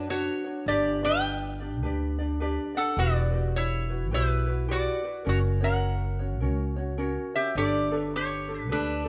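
Hawaiian music, dreamy and sunny, swings at 105 BPM in 4/4, with an up-front lap resonator guitar carrying a bright, metallic, nasal slide melody played with fingerpicks over a light, fingerpicked ukulele and a woody, growly pizzicato upright bass on steel strings, all three heard together for the full 9.1 seconds in a moderate recital hall reverb as the harmony moves from Bmadd9 to Gadd9 in this section cut from a longer piece.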